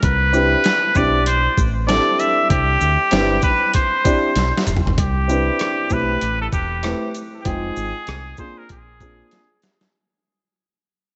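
Jazz-hop with a smooth, relaxed swing, built on a gritty, pitched-down boom bap kit with a thumpy kick, a medium-tuned snare, rim clicks, shaker and toms, over a round, deep dub electric bass and a woody, mellow upright piano moving through chords like Cmaj7, Am9, Fm7 and Bb9. Up front, a nasal trumpet with a straight mute carries the melody with light vibrato and scooped notes, trailed by analog delay. The dreamy mix is soaked in plate reverb and vinyl crackle, with drum fills at 4.4 and 9.3 seconds and a fade-out starting at 5.0 seconds in this short cut from a longer piece.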